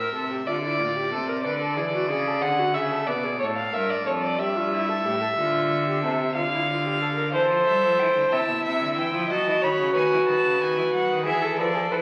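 Serious and solemn, this baroque-style fugue for string quartet in a straight 12/8 is cut from a longer piece, with four bowed players on gut strings giving a reedy, period-style sound. A dark, smooth-topped violin carries the second line up front, over a warm viola accompaniment and a cello bass with light vibrato, until a close, rich-toned violin enters with the melody at 7.7 seconds. The quartet sits in a wet recital hall and comes through like a very old 78 rpm record, vinyl crackle and all.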